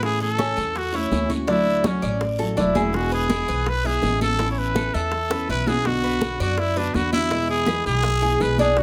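Latin Cuban son and guajira in a sunny, danceable mood, cut from a longer piece, with a raspy, growling trumpet up front carrying the melody with vibrato and scooped notes. Beneath it a full-bodied, fingerpicked nylon-string guitar, a metallic Cuban tres picking arpeggios on double strings, and a woody, thumpy pizzicato upright bass fill out the harmony, while damped congas and tight bongos sit dry in the background alongside a saturated guiro. A drum fill at 5.3 seconds leads into a new section at 5.9 seconds, and light reverb rounds out the room.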